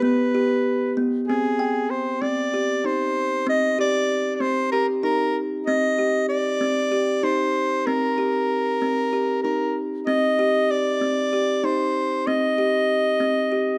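A breathy soprano saxophone and a kalimba begin together, placing this urgent, hypnotic contemporary instrumental in an uneven 7/8 metre. The kalimba carries the arpeggios, its woody, thumbnail-plucked tone ringing bright and mid-forward from a hollow box, close to the listener. Alongside it, the saxophone sings the melody in an intimate, pop-style solo voice, whispered and clear with a soft attack, also placed up front. A brief opening over a G chord gives way at 1.3 seconds to C minor, where the longer second passage settles in. Both parts sit in a moderate recital hall reverb that lends the pairing a gentle sense of space, and the piece is cut from a longer work, breaking off at 13.8 seconds.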